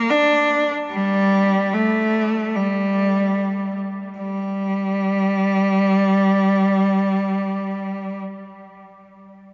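Unfolding in free time, this short rock passage is cut from a longer piece and carries a cinematic, melancholic mood. A single bowed cello carries the melody throughout, from 0.0 to 8.2 seconds, moving between G3 and D4 with an intense, vibrato-rich tone and a smooth top. Its clear voice sits up front, trailed by an analog delay that adds lingering echoes to each phrase. The line falls into two sections, with the second beginning at 4.2 seconds. A huge ambient reverb with a long 6.9-second decay surrounds the instrument, and the sound is rolled off above 7.7 kHz, giving the passage a dark, spacious quality.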